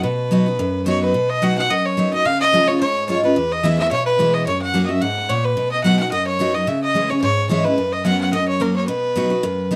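Swung eighths drive this lively, rustic bluegrass snippet at 217 BPM in 4/4 and B major, where a nasal, earthy fiddle with an airy bow and light vibrato carries the melody up front over a bright, full-bodied picked dreadnought acoustic guitar, both playing throughout the roughly 10 seconds as the chords move from B through C#, E, F# and C#m to an F#sus4 and then F# before resolving home to B at 8.9 seconds, all set in a dark production with moderate studio reverb.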